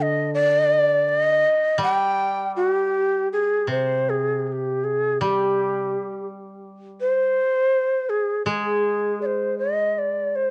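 In an uneven, rubato two-beat pulse, this calm, austere fragment of traditional Japanese chamber music places an up-front, breathy bamboo shakuhachi on the melody, with vibrato, tongued attacks and airy chiff carrying cassette coloring, over a low, woody koto accompaniment plucked with fingerpicks, both touched by plate reverb in a small reverberant room, while the muffled, home-taped top end frames a move into a new section at 3.7 seconds.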